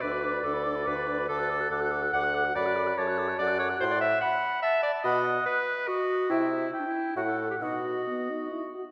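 Classical-period wind quintet music in a restless, urgent triple meter with rubato, cut from a longer movement, where an airy, tongued flute with vibrato carries the melody from the background until 7.8 s, a mellow oboe with light vibrato and a soft attack shapes the second line, a bright, present clarinet sits up front in the accompaniment beside a vintage-toned French horn, and a clear bassoon holds the bass, all set in a wet concert hall reverb.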